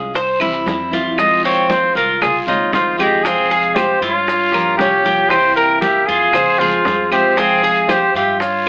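Sultry and nostalgic, this short cut from a longer Cuban son and guajira piece in F minor moves at 116 BPM in a straight 4/4, with an AM radio sound and moderate studio reverb over the whole mix. Picked steel-string acoustic guitar, metallic double-stringed Cuban tres arpeggios and a thumpy pizzicato upright bass start at once, and soft-handed congas, round low-tuned bongos, woody claves, raspy saturated guiro and very quiet grainy maracas join in the background. A punchy trumpet with vibrato takes the lead up front at 1.2 seconds, distant and roomy, and an airy straight-tone silver concert flute adds a second line from 2.5 seconds as the chords pass through Fm, Gm7b5 and C7.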